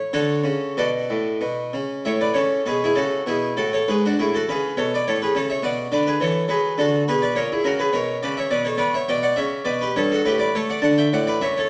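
Classical in a baroque style, this short excerpt from a suite movement has a radiant, dance-like character, moving in three with a flexible, rubato lilt. A solo harpsichord carries everything from 0.0 to 11.7 seconds, its plucked Italian-style tone full and brilliant, with three sets of strings giving it a rich body, and it sits up front in the sound. The harmony travels from D through A and a dominant seventh over G# before settling onto Bm, then passes through an F#7 over A#, a Bm11 and G over B, closing on an A13 that gives way to D. The instrument is heard in a moderately reverberant recital hall, the room's decay lingering around each chord. The recording carries the character of worn, warbling old cassette tape, with wavering pitch drift and a dulled top end that softens the harpsichord's edge.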